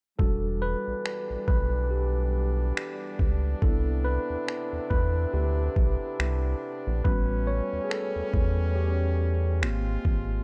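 Contemporary R&B at a late-night, moody 70 BPM in E minor, this swung excerpt moves through Em7, Cmaj9, A13 and G#6 while a clean tine electric piano, heard up front through built-in speakers, carries a solo from 0.2 to 10.4 seconds. Underneath, a rubbery, hollow square bass with a resonant filter pluck bounces along, and a dusty soul sampler-style kit adds gritty, overdriven finger snaps and a thumpy kick. A bright brass ensemble holds sustained chords with light vibrato and sidechain pumping, all set in a dark production with little reverb.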